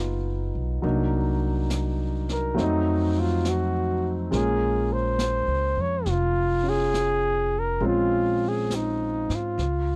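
A wistful, melancholic jazz ballad in Bb minor, this short excerpt moves at a slow 68 BPM in 4/4 with a gentle swing on the eighth notes. A clear grand piano comps in its middle register from the start, its intimate tone carrying long sustain and a touch of audible action noise, while a woody pizzicato upright bass sits up front beneath it. A vintage brush drum kit joins at 0.8 seconds, keeping brushed snare and hi-hat soft and mellow with a rolled-off top in a small, natural-sounding room. At 2.3 seconds a present, up-front flugelhorn takes the melody, its warm jazz tone leading over the rhythm section. The harmony passes from Badd9 through Cm7b5 and F7b9 to Bbm7, and the dry, close sound evokes a 1970s-style studio session.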